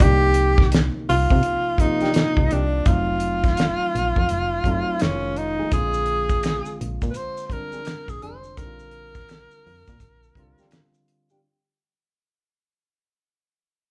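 A breathy tenor saxophone leads this soulful, introspective neo-soul and R&B piece, sitting up front with a whispered, intimate jazz-style tone, soft attacks, scooped notes and vibrato. Beneath it, a barky tine electric piano, lightly overdriven through a combo amp, carries the accompaniment, while a punchy, round FM bass with a fast attack and decaying tone anchors the low end. The damped 70s drum kit is dry and dark, with a fat snare, tight kick and rolled-off top on hi-hat, kick and snare, all played with a swung sixteenth-note feel. A thumb-plucked classical nylon-string guitar joins in the background at 2.0 seconds, and close maracas and finger snaps arrive at 5.7 seconds. The harmony moves from Cm7 through F7b9, Fm7b13 and Bb9 to Gm7/Bb, and the band, heard together in one room with light reverb, fades out across this short cut from a longer piece.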